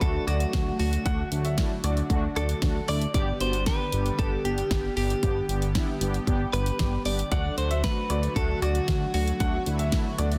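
A dense, heavily limited modern master with light reverb and digital ambience frames this bright, nostalgic synth-pop excerpt in G major at 115 BPM, moving from D to G and back to D. Punchy electronic pop drums and a glossy, up-front chorused synth bass drive the groove, while a twangy, direct-recorded clean electric guitar carries the melody through digital delay over round, detuned synth brass with chorus and a shimmering pulse-width pad with tremolo in the background. A clear baby grand piano adds a polished second line with its own delay, entering at 0.3 seconds, dropping out at 3.0 and returning at 7.3.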